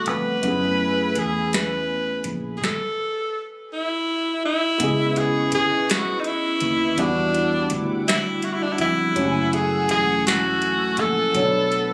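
Captured on a phone in a room with club reverb and compression, this slow, yearning, sultry six-eight R&B excerpt at 55 BPM sets a clear, up-front tenor saxophone melody with light vibrato over a clean tine electric piano with analog chorus, a shimmering retro pulse-width pad in the background, a dark, foam-muted vintage fingered bass, and a booming analog drum machine with deep kick, crisp snare and metallic hats entering at 0.1 s, as the harmony moves from F#m11 into C# phrygian at 4.8 s through C#m9, Em9, F#m9 and Bm9.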